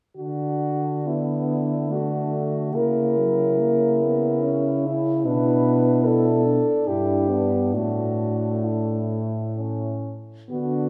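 Three French horns begin together at 0.2 seconds in a lyrical classical passage for horn quartet, cut from a longer piece. It is in D major, in 3/4, with a rubato feel that moves between 62 and 74 BPM. A mellow horn sings the melody up front in a smooth, rounded upper register. Beneath it a warm horn holds the inner accompaniment, and another mellow horn anchors the bass. One of the mellow horns adds a soft vibrato and cushioned attacks. A fourth horn, with a similarly rounded top, joins at 1.1 seconds with a second line in the middle of the texture. The harmony moves from D through C#m6, Bm and Em7/G to an Asus4 that resolves onto A. The quartet plays on together to 10.9 seconds, bathed in the long, wet reverb of a church or concert hall.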